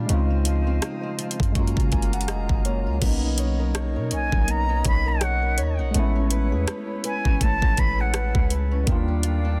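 This romantic, smooth contemporary R&B excerpt opens on a worn, slightly out-of-tune tine electric piano with light overdrive, a bright, close-miked flute section holding soft-edged sustained chords, and a dark, boxy fingerpicked steel-string guitar tracing arpeggios through tape echo. A deep, boomy 808-style bass and a trap kit with a knocking kick, metallic hi-hats, rim clicks, crashes and a soft-clipped snare sit up front at a relaxed 82 BPM in 4/4, with a lightly swung sixteenth feel. The electric piano plays a fill at 1.6 seconds as the chords move from Dbmaj9 to Gbmaj9, and the harmony continues through Bmaj9, Amaj9 and Ebmaj9. At 4.1 seconds a distant, airy concert flute enters with an expressive, vibrato-rich melody fed through tape echo, and it stops at 8.5 seconds. The mix is dry, dense and heavily limited, with a modern sheen.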